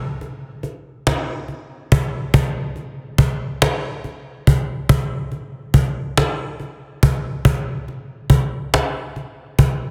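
R&B in a slow 6/8 at 47 BPM, counted in dotted quarters, this brief excerpt from a longer piece carries a yearning, sultry mood with a straight feel. The only part is a cajon, which enters at 0.2 seconds and plays through to 9.8 seconds. Its tone is woody and acoustic, with faint snares, and it sits up front in a live room. A moderate plate reverb with a 2.6-second tail lends the cajon a lingering sheen around its hits. The master is dense and heavily limited in a modern style, and the music moves from an opening passage into a new section at 2.3 seconds.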